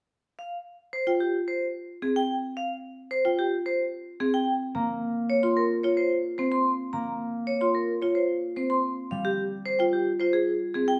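Hypnotic and urgent, this short cut from a longer minimalist classical pattern piece moves at a straight 110 BPM in Bb dorian, with a bright, metallic vibraphone melody carrying medium motor vibrato from 0.4 seconds, woody padauk-bar marimba arpeggios entering at 1.1 seconds, and a thumb-plucked concert harp adding ringing low accompaniment from 4.8 seconds, all set in a moderate large studio reverb.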